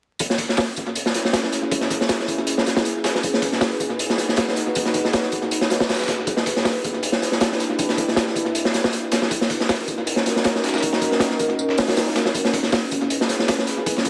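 Drum and bass with a jungle edge, this excerpt from a longer piece feels nostalgic yet frenetic, riding a straight 4/4 groove. A raw garage drum kit sits up front, its boomy kick, medium-tuned snare and hi-hat sounding saturated and rolled-off on top, with a pumping small-room character and a touch of analog delay. Behind it, a dusty soul sampler-style kit adds compressed hi-hat, snare and tambourine with a gritty, naturally pitched tone, tucked into the background and thinned by high-pass filtering. A warbly, detuned tape-like pad enters at 0.7 seconds, holding mellow, lo-fi sustained chords with a slow attack, long release, chorus and its own reverb. The harmony moves through C#m7, G#m7, Em7 and D#m7 before returning to C#m7 at 12.3 seconds. The echo-heavy mix carries light studio ambience and a layer of vinyl crackle.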